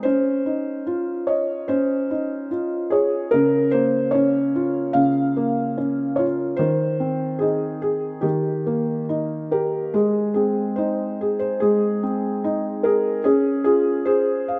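A moderate, lush hall reverb surrounds this rough, homemade-sounding recording of a short fragment from a longer lullaby. A felt-muted upright piano plays alone from start to finish, its tone soft, mellow and intimate, sitting up front. The mood is sleepy and gentle, moving at a loose, rubato 73 BPM in 4/4 and in Ab major, with the piano ranging from Db3 up to F5. The harmony opens on Dbadd9, drifts through Bbm/Db and Ab/Eb, and settles on Eb before a new passage begins at 9.9 seconds on Ab. That second passage moves to Db at 13.2 seconds, and the fragment breaks off at 14.6 seconds.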